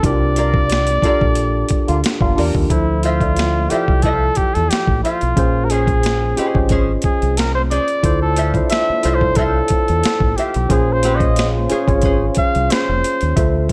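A late-night, sultry R&B and neo-soul groove with a gentle swing, taken from a longer piece and built on lush ninth chords. The band opens with a short accent before a warm flugelhorn steps forward at 2.7 seconds for a solo, its punchy tone carrying light vibrato and scooped notes in a pop style. Underneath, a worn, slightly out-of-tune tine electric piano supplies mellow chords while a deep, round fingered bass anchors the low end with a dark, dub-like weight. An up-front, gritty boom bap sampler-style kit, pitched down, compressed and overdriven, pairs a thumpy kick and hi-hat with a high-tuned snare that rings with the air of a large room. A clean, hollow-body archtop guitar weaves a picked second line through a wah, and a cup-muted trombone section adds soft, veiled stabs from the distance, returning at 8.0 seconds. The whole mix sits in a digital ambience that lends the late-night mood a hazy glow.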